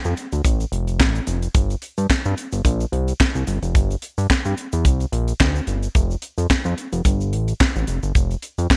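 A dry, close sound frames this late-night, slick early-eighties boogie funk excerpt in G dorian at 109 BPM with a light sixteenth-note swing, where a tight funk drum kit with a high-tuned snare, handclaps, hi-hat and gated reverb sits up front beside a fat, detuned sawtooth analog bass running from F1 to G2, while a grainy egg shaker stays in the background from 0.0 seconds.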